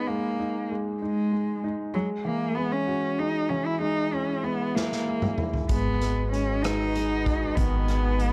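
A six-eight pop ballad in G# minor at a slow 64 BPM, aching and melancholic, in which a nasal, bowed solo cello with tape echo sings the melody with vibrato and portamento over a clear, intimate concert grand piano whose action noise is audible, before a distant, roomy acoustic drum kit played with bundle sticks enters with a fill at 4.8 s, a woody pizzicato upright bass thumps in at 5.7 s, and a lush, detuned sawtooth pad with chorus settles softly into the background at 6.2 s, all within a dark, warm production and a small-room ambience in this fragment cut from a longer piece.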